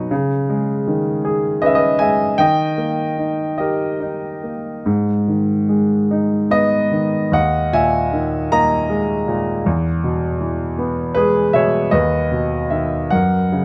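A warm, natural grand piano sits up front in this peaceful, tender classical solo passage, cut from a longer piece, that drifts in a rubato 6/8 at roughly 47-54 BPM, moving through chords such as C#sus2, G#m, E and a closing F# within a moderate studio reverb.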